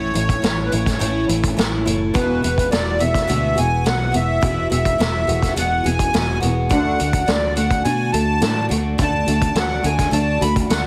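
A sweet, reedy accordion with light tremolo tuning carries the melody up front in this hopeful, open-road folk and heartland rock excerpt, over a shimmering, octave-doubled picked twelve-string acoustic guitar, a dark, clean electric guitar riff with ensemble chorus in the background, a bright, punchy fingered bass, and a saturated, gritty vintage drum kit with a tight kick and rolled-off top entering at 0.2 seconds, all moving through A, Eadd9 and D in a heavily compressed radio sound with small room ambience and light reverb.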